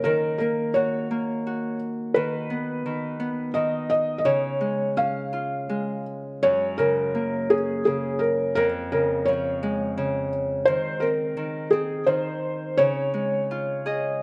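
A felt-muted upright piano and a fingerpicked Celtic harp begin together in this gentle, tender lullaby for children, cut from a longer piece and tuned slightly low to A4 = 438 Hz. The piano carries the melody in a soft, mellow, intimate voice, its action noise audible up close. Beneath it, the harp rings out in a fingerpicked accompaniment that reaches from deep bass notes up into the piano's range. The triple metre moves with a rubato, unhurried sway as the harmony drifts from D#m7 through B/D#, C# and F# before settling back on C#. Near the close, the harp adds a brief fill at 13.5 seconds. Both instruments sit up front, captured by close, detailed microphones with a light touch of reverb that keeps the sound warm and near.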